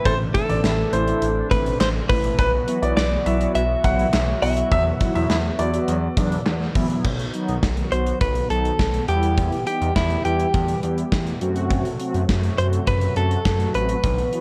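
A straight 4/4 pulse at 103 BPM from an up-front gated 80s drum kit, with its punchy kick, medium-tuned snare, handclaps, hi-hat and bright crash cymbal ringing in a stone room, drives this nocturnal, melancholic synth-pop excerpt, where a clean, picked, compressed direct-recorded electric guitar carries the melody over a smooth sawtooth synth bass, dark, detuned synth brass with chorus, phaser and vibrato, and a soft-attack analog pad in the background, while a clear, polished baby grand piano adds a second line through digital delay until 6.1 seconds, the mix wrapped in light studio reverb and the warbly pitch drift of worn cassette tape.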